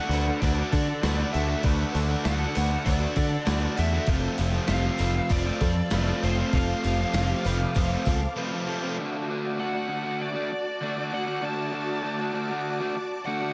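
A hazy, blissful slice of shoegaze and dream pop at 98 BPM in a straight 4/4 opens on a layered wall of guitars: a smooth overdriven lead carries the melody through an analog delay, while a crunchy overdriven guitar with subtle chorus and a biting overdriven guitar steeped in reverse reverb play riffs beneath it. A string machine voicing violas holds sustained, sawtooth-edged chords with a soft attack and ensemble chorus in the background, and a clean, direct-recorded electric guitar, compressed and treated with chorus and delay, ripples through arpeggios further back. A moment later the rhythm section arrives: a modern, up-front picked electric bass, a gated 80s digital drum machine with a thumpy kick, gated-reverb snare and hi-hat carrying a tape-warm, small-room character, and a jingly, band-limited vintage tambourine. The harmony moves from Dadd9 to Fmaj7, and the drums, bass and tambourine drop away around 8.3 s for a short break before the progression lands on D at 9.0 s, where the arpeggiated guitar and biting riff also fall silent. 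The lead, crunchy guitar and strings carry on until the cut at 13.5 s, the whole mix soaked in a moderate plate reverb that leaves a dreamy haze around every note.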